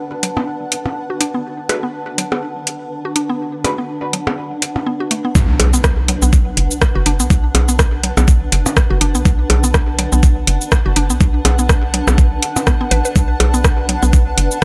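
Minimal techno with a cool, hypnotic pull, this cut opens on a cloudy, evolving granular pad and a woody, nasal mallet-like pluck riff, both pumping under sidechain, the pluck also carrying chorus and digital delay, alongside a garage drum kit of metallic hats, cabasa and rim click and crunchy percussion blips in small room ambience, with a filter sweep and a brief muted, detuned dub chord stab at 1.7 s, before the drop at 5.4 s brings in an up-front, overdriven electronic kick, a hollow, bouncy FM bass and a background impact, all in a close, mostly dry mix.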